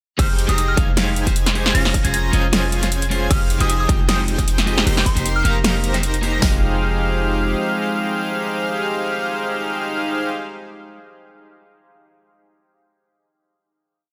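A half-time future bass groove at 154 BPM in 4/4, lightly swung on the sixteenths, drives this dreamy, lush piece in F minor, built from two layered big-room dance drum kits with a punchy kick, huge snare, metallic hats and hat rolls, re-recorded in a small room and set up front. A deep, boomy 808-style bass on F1 carries tube saturation and follows the chord rhythm through Abmaj7/F, Dbmaj7/F, Fm9 and Cm7/F before the drop settles on a final Fm9 at 6.4 seconds. A smooth, detuned supersaw riff throbs with syncopated pushes in open voicing under sidechain pumping and dub echo, while a slightly broken-up electric guitar picks dotted-rhythm chords and rings on until 11.0 seconds. In the background, a pure FM bell plays short answering phrases with chorus and delay, and an airy, vibrato-touched lead doubles the chords an octave higher in arpeggios. A breathy, very quiet pad with a slow attack holds sustained chords beneath it all, and the mix stays dry, with little reverb.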